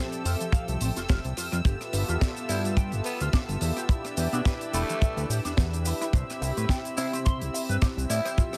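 A fat, thick analog bass sits up front with a tight, dry kick in this groovy, feel-good nu-disco cut from a longer piece, moving at 107 BPM with a light 16th-note swing over Fmaj9, G13, Em7 and Cmaj7. A clean, twangy envelope-filtered guitar riff with lush chorus and delay stays in the background, a smooth analog pad and floating bowed strings pump under sidechain, and a tight funk kit adds a high-tuned snare, rim click, hi-hat and shaker. At 2.5 seconds a breathy, raspy tenor saxophone enters with a growling solo melody soaked in tape echo, all set in a small room.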